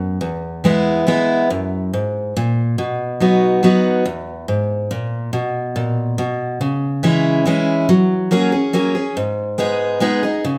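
Bathed in a moderate large-studio reverb that carries the feel of a band playing live in one room, this driving, rustic bluegrass fragment in 3/4 features a full-bodied, up-front picked dreadnought steel-string acoustic guitar playing alone, moving through E, F#, and B before shifting at 4.1 seconds into a second section that passes through C#m, F#add9, and G#m, as it is cut from a longer piece.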